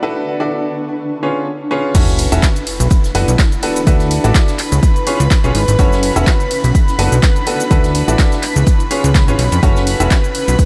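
A bright baby grand piano riff with a short sustain and delay pumps to the sidechain over a silky, chorused analog string pad and a blurred granular cloud pad in this soulful, energetic piano house excerpt, while a dry, overdriven analog drum machine plays claps, shaker, hi-hat and cymbals; at 1.9 s the drop lands with a very quiet sub drop, an up-front overdriven electronic kick, a funky, plucky analog bass and a very quiet swinging big-band kit on hi-hat and snare, all over a Dmaj9, C#7, F#m7, Bm7 cycle.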